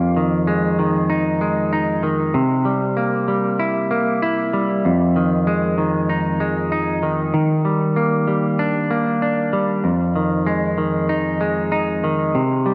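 Ethereal and hazy, this dream pop passage, cut from a longer piece, moves at 96 BPM in a straight 4/4 and sits in F dorian. A semi-hollow electric guitar plays alone for the full 12.7 seconds, its clean, picked tone bright and hollow-bodied, compressed and placed up front, ranging from F2 to E4. A subtle chorus and tape echo color the guitar, and a lush, wet hall reverb with a 2.6-second decay surrounds it in a misty glow. The harmony drifts from Fm7 to C7, back to Fm7, then to Ebmaj7 before returning to Fm7 at 9.8 seconds. The rough home demo mix gives the dreamy atmosphere an unpolished character.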